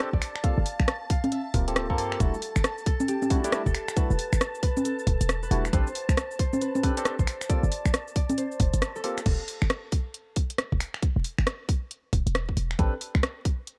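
A ringing, fingerpicked concert harp carries the melody through dub echo in this soulful, bouncy two-step UK garage excerpt at 136 BPM in E minor, swung on the sixteenths. Barky electric piano stabs run through a combo amp with tape echo, and a silky vintage string machine pumps dark sustained chords in the background, both moving through minor eleventh harmonies until about 9.3 seconds. Underneath, a punchy sine-toned 808 bass, a tight up-front kick, vinyl crackle and a small-room garage kit with cabasa, congas, finger snaps, rim clicks, crash and warm hats drive the groove, and a band accent at 8.8 seconds opens a short break before the second section.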